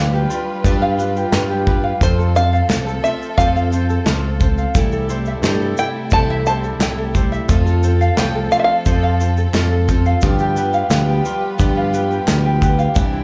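Hopeful and warm, this 88 BPM indie folk excerpt from a building arrangement sounds like a live club gig heard through the PA, with a shimmering, octave-doubled twelve-string acoustic guitar and light fingerpicked ukulele arpeggios, both touched with slapback echo, over soft, bowed sul tasto strings in the background, a round, up-front picked electric bass, a grainy tube shaker, a punchy country drum kit entering at 0.6 s, very quiet crisp group handclaps from 1.3 s, and a plunky, twangy open-back banjo melody with slapback echo and analog delay from 2.0 s to 9.8 s, all moving through G7, F and C6 chords.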